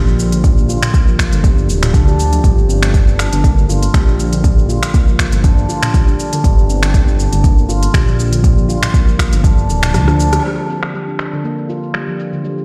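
A swung 120 BPM groove in 4/4 drives this spiritual afro house in G minor. Up front sits an overdriven, deep electronic kick, beside an afro-pop kit with smooth, tape-warm hats, finger snaps, rim clicks, shaker and toms, each shaded by low-pass filtering. A rumbling, detuned sawtooth bass pumps beneath a ringing stainless-steel handpan that plays meditative, airy arpeggios through delay, filtering and pumping over Dmadd11 and Gm7. At 9.9 seconds the kick drops out for a drum fill, a band accent lands at 10.3 seconds, and the bass stops at 10.4 seconds as the handpan and kit carry on into a brief new section.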